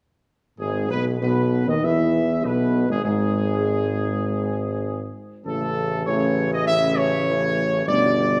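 This classical brass excerpt, cut from a longer piece, sounds regal and majestic at a stately 99 BPM in 4/4 with a straight feel, set in E major. A clear trumpet section carries the melody between G#4 and E5, tight and up front with a light vibrato. Beneath it, a dark French horn section holds sustained chords from a punchy but distant, roomy place in the background, while a warm trombone section adds its own sustained ensemble chords with a light vibrato. A vintage-sounding solo tuba anchors the bass from G1 to E2. All four parts play together from 0.6 to 8.4 s, moving from E/G# to A at 5.5 s and reaching G at 7.9 s, all set within the generous reverb of a scoring stage with a 1.9 s decay.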